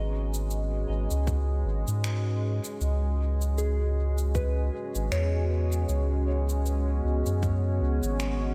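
Hazy and meditative, this ambient dub excerpt moves at 78 BPM with a swung 16th feel, as a deep, moody pad of detuned, wave-folded sustained chords carrying vintage 12-bit sampler grit shifts from G#madd9 to C#m7 at 2.8 seconds. A round, soft sub bass sits up front beneath it, while a pure FM bell traces gentle arpeggios through chorus and diffuse delay in the background. Tape-warm electronic cabasa and finger snaps with dub echo enter at 0.3 seconds, joined at 1.3 seconds by a tight kick set back in a large-room ambience.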